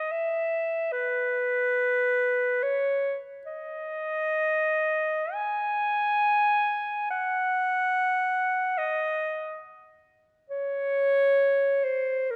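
A warm clarinet plays alone and up front in this lyrical, serene classical excerpt, unfolding expressively in free time for 12.4 seconds between Bb4 and Ab5 within a moderate concert hall reverb.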